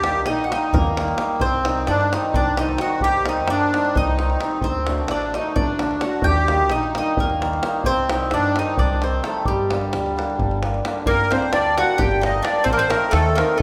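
A reedy, sweet accordion with light tremolo tuning leads the melody up front in this restless, virtuosic Balkan wedding-band piece in 7/8, joined from the start by a mellow, round mandolin picking a second line on double strings, a dark, woody pizzicato upright bass, and a deep davul. A bright, shimmering hammered dulcimer enters at 0.1 s with ringing accompaniment, as the harmony moves through Eb, Cm, D and Gm in a moderate recital-hall reverb. At 11.1 s the music turns to a new section that closes on an Adim chord before the clip, cut from a longer piece, comes to an end.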